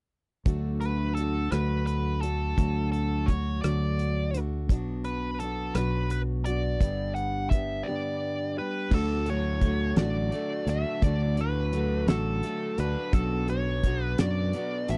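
Folk rock with a heartland rock edge, this hopeful, jangly excerpt moves in a slow 6/8 at 57 BPM in D major, with a boxy, dark parlour acoustic guitar and a punchy fingered bass under a damped 70s drum kit with a fat snare and tight kick, while a bright, nasal lead guitar with a parked wah and overdrive carries the melody from 0.8 seconds, and after a break at 7.9 seconds a double-tracked crunchy overdriven guitar riff enters in the background at 8.9 seconds, all captured in a dry, close 1970s-style studio sound.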